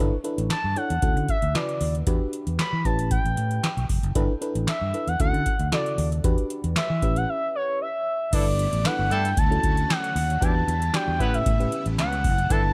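This smooth, danceable early-eighties boogie funk excerpt opens on a warbling FM electric piano and a growly, punchy fingered bass, joined almost at once by a booming analog drum machine with a deep kick, tonal snare, handclaps, metallic hats and gated reverb. An expressive, up-front sawtooth lead with portamento, vibrato, chorus and tape echo carries the melody over a cycle of G6/9, Dmaj7, Em7 and A9, with a break at 7.3 seconds. At 8.3 seconds a clear horn section in octave doubling adds a second line while a shimmering string machine sustains chords in the background, all in a dry, close-sounding mix.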